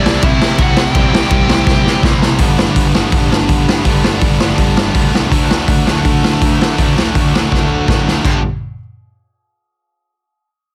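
A raw, saturated garage drum kit with a boomy kick sits up front in this rowdy, rebellious punk rock excerpt, over two bright, picked distorted guitar riffs, a growly fuzz bass in the background, a dark, barely audible double-tracked overdriven guitar, and a nasal lead guitar with a parked wah whose melody lasts only until 2.0 seconds, as the chords move from C to G to D in a dense, dry, heavily limited master.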